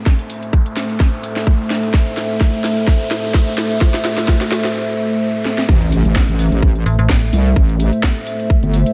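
Bass house at 128 BPM in A minor, swaggering and gritty, this cut from a longer piece builds over a dark, moody analog pad with chorus, 12-bit sampler grit and sidechain pumping, while an electronic riser climbs, an overdriven, tight kick punches up front and a garage kit's cracking snare, hi-hat and crash play a fill until a short break at 4.8 seconds. The drop lands at 5.7 seconds with an impact as a heavy, detuned wobble bass with saturated, compressed chorus and sidechain pumping enters up front, and a brief metallic FM bass stab cuts in at 6.9 seconds. A light reverb sits over the mix.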